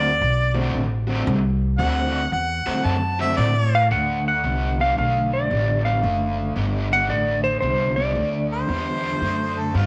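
Bathed in a moderate echo-chamber reverb with a rolled-off top, this swaggering, laid-back swing blues at 113 BPM in D mixolydian rests on a D7 chord, with a woody pizzicato upright bass and a dark, picked, overdriven semi-hollow guitar riff shimmering with harmonic tremolo throughout, while a warm, overdriven harmonica solos with scooped notes and light vibrato until 3.9 s, a clean slide lap steel with volume swells and slapback echo carries the melody from 3.7 s, and the harmonica returns at 8.5 s.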